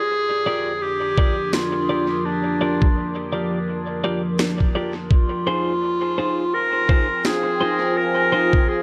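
A clear, up-front clarinet carries the melody from the very start of this hazy, meditative ambient dub excerpt at 84 BPM, its lines trailing dub echo over a chord shift from Gm7 to Fm7 at 5.1 seconds. Beneath it, a deep, warbling pad of detuned sawtooth and sine tones with a sub octave holds long sustained chords through chorus and its own reverb, while a clean electric guitar adds picked stabs roughened by vintage 12-bit sampler grit and echo. A muffled, thumpy, pitched-down kick sits prominently in the mix, joined by a woody electronic snare that throws dub echo into a moderate echo-chamber space.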